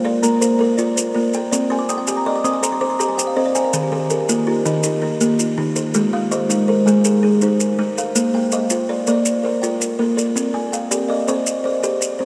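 A buzzing kalimba sits up front, its short, dark, woody notes carrying a rattling edge as they cycle through arpeggios in this hypnotic, warm excerpt of southern African traditional music. A second kalimba, hollow-bodied and ringing, shares the same interlocking mbira-style cycle with a fuller, close-miked tone, and a kalimba fill runs from 1.5 to 3.7 seconds. Both kalimbas are touched with analog delay, while maracas enter at 0.2 seconds with a grainy, mellow shake. The music moves at 109 BPM in a straight 12/8 in B-flat Mixolydian, stepping through Bb, Cm, Eb and Ab before a new section begins at 8.1 seconds and returns to Bb and Cm. A huge ambient reverb with a long tail soaks the mix and gives it a dreamy quality.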